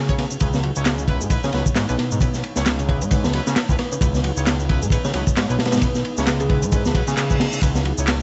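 A fat, saturated analog bass opens this funky, raw, swung breakbeat fragment, joined at once by a gritty, punchy acoustic kit of kick, snare and ride, a dry electronic shaker with handclaps, a very quiet, deep ambient pad holding dark sustained chords, bright horn stabs with dub echo and a reedy, overdriven combo organ riff in the background, while a woody kalimba melody with a small-speaker tone and dub echo enters at 1.4 seconds and a reverse cymbal rises at 7.0 seconds over a reverb-washed bed of vinyl crackle.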